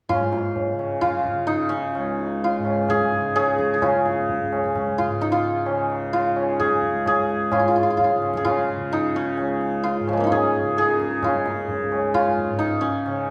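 Meditative and serene, this Hindustani classical passage in raga bhupali is cut from a longer piece, with a mellow, hammered santur ringing up front over a softly plucked tanpura drone whose buzzing, shimmering tone sits low beneath it. A high-tuned tabla with a short ring sounds distant, as if set back in a large room, while a wet recital-hall reverb gives the whole ensemble a spacious glow.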